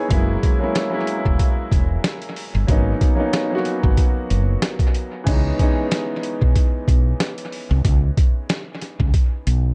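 Gritty and moody, this excerpt of boom-bap hip-hop moves at 93 BPM in C# dorian with a lightly swung feel, as a thumpy, compressed, pitched-down sampler drum kit with 12-bit grit sits up front beside a round, dark fretless electric bass, while an intimate upright piano with audible action noise, filtered through cassette tape and dub echo, carries chords from F#7 through G#m11 to C#m9 in a dry, echo-heavy mix.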